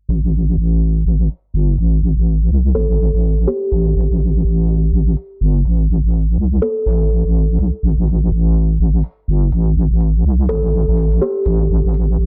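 Bass house at 124 BPM in A minor, with a gritty, swaggering strut from its 16th-note swing, in an excerpt cut from a longer piece. A heavy, saturated wobble bass sits up front throughout, its square-and-sine tone thickened by chorus and tube saturation, while a very quiet, tape-tinged electronic hi-hat sounds as if re-recorded in a large room, and a filter sweep runs across the whole passage. A woody, hollow kalimba plucks short, airy phrases through dub echo, entering at 2.7 seconds and returning at 10.5 seconds, all in a dense, heavily limited modern master with digital ambience, a low-pass filter and a faint mains hum.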